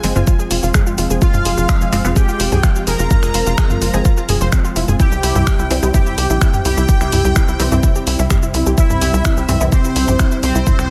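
Driving and hypnotic, this melodic techno section at 127 BPM in F harmonic minor moves from Fm to C at 5.0 s. A juicy, resonant sweep polysynth carries the melody with ring modulation, chorus, cassette tape and digital delay, while a smooth supersaw adds a phased second line behind it, a detuned analog pad holds sustained chords, a lush, warbling unison pluck spins arpeggios in the background, and a muted, deep dub chord stab punctuates with phaser and tape echo. Underneath, a tight, nasal sequencer bass and a tape-warm house kit of finger snaps, hi-hat, shaker and toms are joined at 0.3 s by a punchy, up-front electronic kick, with the synths and bass pumping against it in a dry mix that carries little reverb.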